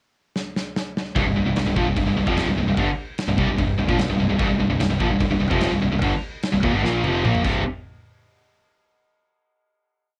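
Heavy metal at 148 BPM in 4/4, aggressive and heavy, opens with a pickup bar of drum fills from a big rock kit before a C5 power-chord riff takes over at 1.2 seconds and runs to a final hit at 7.7 seconds. Up front, the acoustic drums drive a metal groove with a punchy kick, medium-tuned snare, toms and bright crash cymbals in an airy, polished studio room, while a tight distorted guitar picks the riff. Behind it sit a scooped high-gain guitar and a double-tracked, compressed overdriven guitar, all doubled by a growling fingered electric bass playing driving overdriven eighth notes, with light reverb and the character of a home cassette recording.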